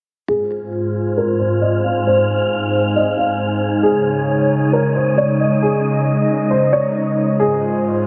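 Dreamy and blissful, this hip hop excerpt moves at 135 BPM in 4/4 with a half-time feel, resting in Ab major. A felt-muted upright piano carries the melody from 0.3 s, its boxy, intimate tone and audible action noise softened by a low-pass filter and touched with digital delay. Alongside it, an up-front, breathy pad holds sustained chords from the same moment, its detuned, chorused body drifting through Ab6 and Dbsus2 before returning to Ab6. From 0.8 s, a wind-like tuned noise texture adds a faint, airy layer with its own built-in reverb. A filter sweep runs across the whole passage, and a huge ambient reverb with an RT60 of 6.7 s surrounds the sound.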